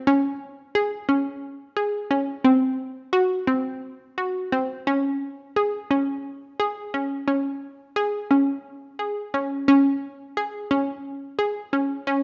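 This contemporary instrumental piece carries a hopeful, shimmering mood, moving at 175 BPM counted in eighths within a straight 7/8 metre. A single analog pluck synth plays alone from 0.1 to 12.2 seconds, staying within the range of C4 to Ab4. Its tone is round and bright, built from detuned sawtooth and square waves with a noise layer, and each note opens with a fast attack and a filtered pluck before decaying. Chorus gives the synth a shimmer, and it sits up front in the mix within a light reverb. The short passage moves into a new section at 4.9 seconds and ends at 12.2 seconds, as it is cut from a longer piece.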